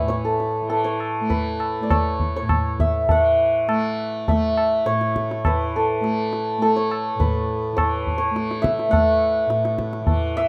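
Set in a wet studio ambience, this devotional, serene Hindustani classical passage in raga bilaval on A, cut from a longer piece, moves in 5/4 from 102 BPM and gradually speeds up, with a shimmering, hammered santur up front carrying the melody from A4 to B5 over a mellow, buzzing tanpura drone and close, high-tuned, ringing tabla, shifting into a new section at 3.1 seconds.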